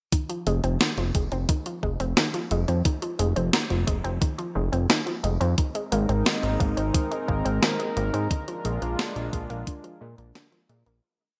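Bright 1980s-style digital production with light reverb frames this moody, cinematic synthwave piece in F dorian at 88 BPM, where a thumpy electronic kick and a clean 12-bit drum machine's closed hi-hat and gated-reverb snare backbeat drive a fat, detuned sawtooth bass galloping in sixteenth notes with sidechain pumping, a round, nasal analog pluck spins a chorused, delayed arpeggio, and a dark, smooth pad with a slow attack joins at 5.6 s as the chords move from Fm7 to Abadd9 and Bb7, before the kick drops out at 9.8 s within the fade-out that begins at 7.4 s.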